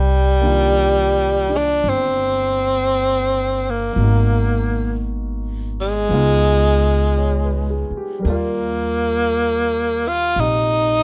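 Jazz ballad excerpt with a smoky, intimate mood and a swing feel, where a breathy tenor saxophone carries the melody up front with subtone, vibrato and scooped notes over a warm grand piano with long sustain and a woody pizzicato upright bass, all sitting in light reverb.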